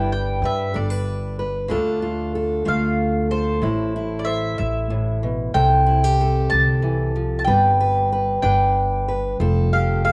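Peaceful and gentle, this fragment of an acoustic folk piece sways at 62 BPM in a straight 6/8, with a round, picked mandolin carrying the melody up front over bright fingerpicked steel-string acoustic guitar and a woody, thumpy pizzicato upright bass, all three playing throughout beneath a moderate spring reverb as the chords move from G through Dm, Am and C6 back to G before settling on Fadd9.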